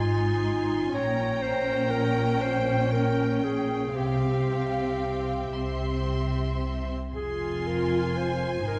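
A clear, punchy solo clarinet sits up front in this solemn, melancholic fragment of a slow romantic orchestral movement, carrying a second line in its middle register across the full 8.8 seconds. Above it, a chamber violin section sings the melody high and softly, its bowed tone rich, smooth and even with vibrato, while a symphonic violin section adds another line just beneath, lush and expressive with a soft attack. Violas fill in a focused, close accompaniment, and cellos and a distant double bass section anchor the bass with expressive bowed vibrato. The music moves in a flexible, rubato 6/8, drifting from F minor through a diminished chord over Bb and a suspended C chord before settling back on F minor around 7.1 seconds. A dark production and a concert-hall reverb with a 2.0-second decay wrap the ensemble in a deep, enveloping space, and the passage is cut from a longer piece.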